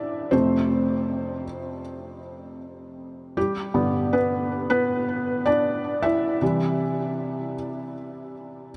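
A felt-muted upright piano plays alone from the start of this short pop excerpt, its soft, mellow tone, audible action noise and short sustain sitting up front and intimate while delay and a huge ambient reverb soak the dreamy mix, moving through F, G and C chords with a longing, emotional feel until it ends at 8.8 seconds.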